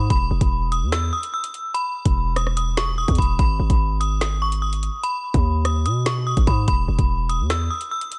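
Drill hip hop at 146 BPM with a half-time feel, this brief, menacing cut sets a metallic, inharmonic FM bell ringing high over a dark E5 to G#m movement, its chorus and tape echo lending the tone a full-bodied shimmer. A heavy, punchy 808-style bass with a sine core and noise layer sits up front beside the electronic drill kit, whose knocking kick, woody snare, metallic hats, rim clicks and finger snaps enter at 0.1 seconds. The bass stops at 7.7 seconds while bell and drums carry on in a digital ambience.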